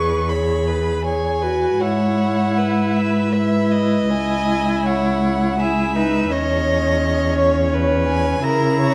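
Serene and tender, this brief fragment of a slow romantic string quartet movement sways in a flexible, rubato triple metre as a rich, vibrato-laden first violin sings the melody over a focused second violin line, an even, close-sounding viola accompaniment and an expressive, up-front cello bass with soft attacks and portamento, all set in a dark production with moderate recital hall reverb and a layer of vinyl crackle.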